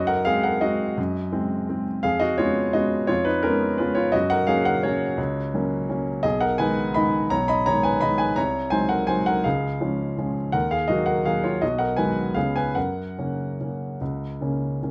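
Classical piano waltz in a supple rubato 3/4, this playful, elegant fragment of a longer piece features a solo baby grand piano sounding natural and up front, spanning B1 to B5 through chords such as G#7/F#, C#7/E# and G#m/B before settling on F# at 12.8 seconds, all set in light reverb with a dark, warm production.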